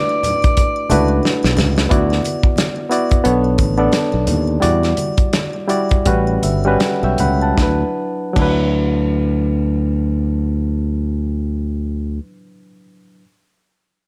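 Lush 1970s-style soul in a romantic mood, cut from a longer piece, with a swung sixteenth-note feel that slows through its middle stretch. A breathy alto saxophone with light vibrato sounds a single note at the start before dropping out at 1.3 seconds, while a barky, reedy electric piano carries the accompaniment through rich chords from D6/9 through Bm9, Em9 and A13 before returning home, adding a fill of its own just before the final chord. The soul drum kit sits up front with dark cymbals, a medium-tuned snare and a tight kick, playing a fill at 1.2 seconds, alongside very quiet, low-tuned congas and a shimmering vintage triangle in the background until 8.6 seconds. A bright, punchy fingered electric bass enters at 0.9 seconds and holds the low end until 12.2 seconds. Light small-room reverb rounds out the whole.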